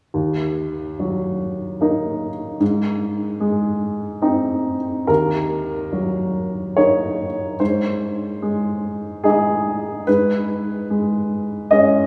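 Melancholic and intimate, this neoclassical minimalist piano piece moves at a rubato 73 BPM in 3/4, cut from a longer work. A single upright piano plays alone from 0.1 to 12.1 seconds, spanning D#2 to D#6, its tone woody and natural with a short sustain and audible action noise that keeps it close and up front. A long church reverb of 3.4 seconds surrounds the instrument, lending the clear, present playing a sense of a large hall around it. The harmony rocks between D#m and G#, then shifts after 5.1 seconds into a second section that repeats the pair before settling on C#5/G# at 10.1 seconds. The spare arrangement and gentle pacing give the passage a reflective, private quality.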